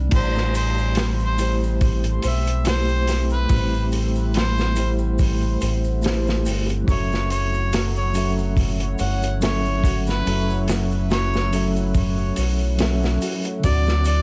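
A mellow tine electric piano with tremolo and tape echo opens this hypnotic, brooding trip hop excerpt at 71 BPM in A dorian, joined at once by fingerpicked Celtic harp arpeggios ringing in the background and a round, detuned analog bass sitting up front. A crunchy, saturated breakbeat kit with a tight kick and dark cymbals arrives with distant maracas, while a vintage-toned harmonica carries a jazz-style solo melody with light vibrato and echo, and from 0.9 seconds a deep, chorused ambient pad with a slow attack hovers underneath. The chords move from Am7 to F#m7 to D7 in an echo-heavy mix laced with vinyl crackle.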